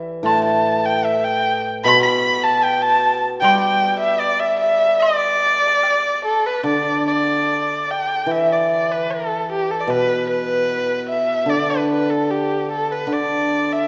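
A shimmering, ringing hammered dulcimer opens this festive yet graceful Chinese traditional chamber piece in D zhi mode at a rubato 75 BPM in 2/4, joined at 0.3 seconds by an up-front, dark erhu melody with light vibrato, soft attacks, portamento and an airy, intimate bow, while a very quiet acoustic woodblock sits beneath until 6.0 seconds, before the music moves into a new section at 6.7 seconds, all set in a wet recital hall reverb with a faint mains hum.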